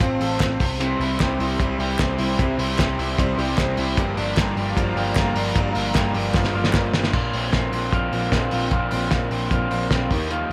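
A straight 4/4 pulse at 151 BPM drives this breezy, bright stretch of jangly indie pop, cut from a longer piece, with a cloth-damped drum kit sitting up front: muffled and thuddy, with a fat snare, tight kick and dark crash, ride and hi-hat, and a drum fill from 6.3 to 7.1 s. A quiet, crisp group handclap adds dry percussion until 6.8 s, while a vintage muted picked electric bass stays round and punchy in its low register. An electric guitar through a small old amp plays slightly broken-up, compressed arpeggios coloured by harmonic tremolo, and from 0.8 s a crunchy overdriven guitar adds accompaniment in the background. A hollow, flute-like pad with chorus holds soft sustained chords high above until 7.1 s, as the harmony moves through F/A, C and Gm7. At 7.1 s the music settles into Bb major on a Bbadd9 chord, all under a light reverb.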